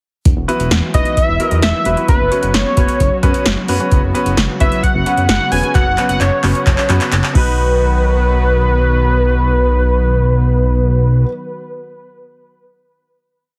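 A heavily compressed, radio-ready sound with light reverb frames this short, complete synth-pop piece in B major, bright and nostalgic at 131 BPM in a straight 4/4. An overdriven analog drum machine sits up front with a deep kick, punchy snare, metallic hats, handclaps and crash cymbal, playing a straight beat until 7.5 seconds, with a fill from 5.8 seconds closing the pre-chorus. Beneath it a glossy, retro synth bass blends pulse, sawtooth and sine tones with a plucked filter and chorus, while a concert grand piano adds intimate off-beat triads, its action noise audible and its sustain long. A lush, detuned unison pad with chorus and phaser breathes airy sustained chords in the background, moving from Esus2 to F#sus4. Over it all, a thick, bold sawtooth lead with a sub octave, vibrato and delay sings song-like motifs from 0.9 seconds, and the harmony lands on B at 7.4 seconds, just before the final hit at 7.6 seconds.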